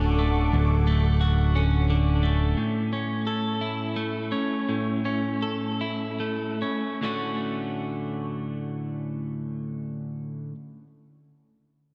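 Euphoric and cinematic, this rock excerpt in a straight 6/8 opens on a Dmaj7 chord with a silky, detuned analog string pad glowing in the background through ensemble chorus and phaser, while a round, punchy picked bass sits up front, both dropping out at 2.5 seconds. A clean, compressed twelve-string electric guitar carries on with arpeggios through slapback and tape echo until 10.6 seconds, as the music slows between 2.6 and 7.0 seconds over an A chord before returning to Dmaj7. A lush hall reverb gives the whole a big arena sound.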